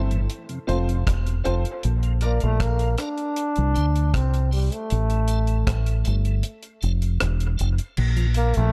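A vintage-toned trombone carries the melody over a mellow, boxy baby grand piano whose echoed stabs fall away at 2.4 s and a round, punchy fingered electric bass up front, soon joined by a dry, tight reggae drum kit and a piping tonewheel organ with chorus vibrato and key click in the background, in this hazy, spacious 78 BPM dub reggae excerpt in F major, moving through F, Bb, C and Am under a filter sweep and dub echo, with the kick muted from 6.4 s.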